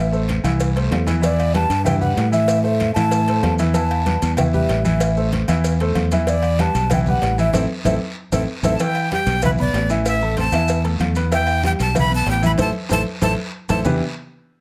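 Closely miked with light reverb, this fiery, driving salsa excerpt in E minor at 190 BPM opens with an airy clay alto ocarina carrying the melody until the breathy, bright jazz flute takes over at 8.7 seconds, while a worn baby grand piano with long sustain accompanies over a round, punchy fingered electric bass up front, and congas, grainy maracas, ringing agogo bells and timbales, tight cowbell and bongos, and a raspy vintage guiro fill out the percussion bed behind them, with band accents and drum fills closing each section.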